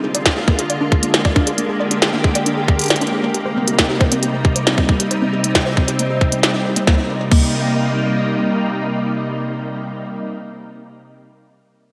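Melancholic and eerie, this IDM excerpt moves at 136 BPM in 4/4 with a straight feel in C minor, drifting from a Bb7 chord to Cm7 at 3.3 seconds. A soft string machine holds silky, slow-attack chords up front from the start to 10.2 seconds, its ensemble chorus and vintage 12-bit sampler grit giving the sustained tones a warbling, mellow character. Alongside it, a warbly dusty pluck spins dark, nasal arpeggios in the background, detuned and lo-fi with a noise layer, chorus and delay, while a filter sweep runs across it through the first section. An overdriven electronic kick sits tight and up front, joined by a glitchy kit of tiny snare, clicky hats and crash cymbal treated with overdrive, gated reverb and delay, all of which stop at 7.4 seconds to leave the strings alone. A lush digital hall reverb bathes the bright 1980s-style production.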